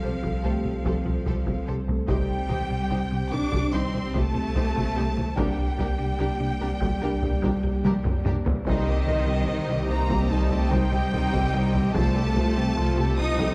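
A straight 4/4 pulse from hard-stick taiko drums, set in the background with a fill at 7.8 seconds, drives this vast, tense hybrid orchestral and electronic film score, cut from a longer piece. Lush bowed violins carry the melody over a second violin line and a viola section, while close, rich cellos, a double bass section, a clean sine sub bass and a rubbery, hollow square-wave synth bass riff anchor the low end. A dark, detuned analog pad with chorus holds sustained chords beside mellow French horns entering at 0.4 seconds, a woody FM pluck traces very quiet arpeggios, and the mix sits in a moderate scoring-stage reverb.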